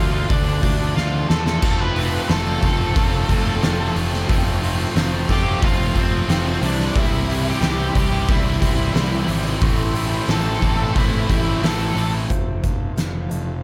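A high-gain lead guitar melody opens over a distorted guitar riff, fuzzy punchy bass and veiled, muted strings in this dark, brooding quiet-loud alternative rock passage at 90 BPM, where an oversized, boomy drum kit sits up front, a sludgy second riff guitar joins at 1.6 seconds as the chords move from Dm through F, Cadd9 and Am, and a boxy fingerpicked swing-style acoustic guitar enters with arpeggios at 12.3 seconds.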